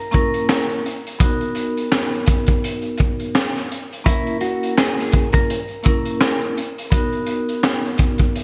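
A mellow, clean electric guitar opens this boom-bap hip-hop excerpt with a dark, fingered melody soaked in lush chorus and digital delay, ending at 6.2 seconds. A soft-mallet vibraphone rings with slow motor vibrato and a cassette-tape tint over chords moving between A# diminished and B major seventh. Up front, a gritty, saturated breakbeat kit with a punchy kick, high-tuned snare, hi-hat and handclaps drives a swung 84 BPM groove through gated reverb, giving the piece a tough yet reflective mood under bright 1980s-style digital production and vinyl crackle.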